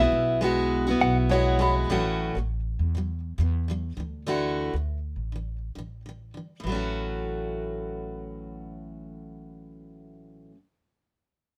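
A sunny, carefree acoustic pop excerpt at 101 BPM in A major with a light swing opens over an Eadd9/B chord, with a picked steel-string acoustic guitar showing finger squeak and a woody, thumpy pizzicato upright bass up front, joined briefly by compressed, scooped arpeggios from a clean direct electric guitar until 1.7 s and a very quiet, boxy felt-muted upright piano whose fill ends at 1.9 s, after which the guitar and bass carry the A6, Dadd9 and A6 changes under light reverb until about 10.6 s.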